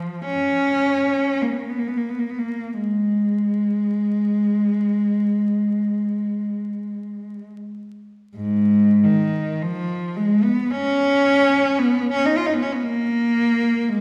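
Lonely and yearning, this brief classical fragment, cut from a longer piece, features a single bowed cello playing alone in a free, rubato manner. The cello sounds close and up front, with a soft attack, vibrato and sliding portamento, its expressive line ranging from G#2 to E#4. A wet recital-hall reverb surrounds it, and vinyl crackle adds an aged patina across the 14-second span.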